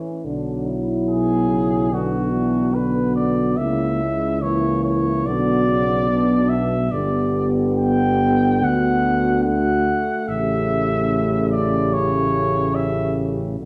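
A warm flugelhorn sings the melody up front with vibrato, entering at 1.1 seconds in this serene, tender, hymn-like passage for brass band, played with rubato in a classical style. Beneath it, a dark, distant French horn section carries the second line with soft attacks, while a clear, close-miked trombone and a lightly vibrato euphonium sit in the background, and a smooth-topped tuba anchors the bass up front. A wet recital-hall reverb gives the ensemble a roomy glow.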